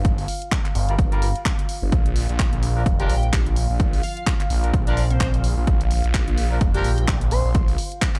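A swung 4/4 bass house groove struts on a punchy, overdriven kick and a garage kit of handclaps and warm hi-hats, beneath a swirling, thick detuned saw bass that pumps with the sidechain and carries a filter sweep, while a deep, moody ambient pad sits in the background, bright horn stabs with their own filter sweep and dub echo enter at 0.9 seconds, and an airy, dreamy lead with 12-bit sampler grit and vibrato joins at 3.0 seconds in this bouncy, swaggering cut from a longer piece.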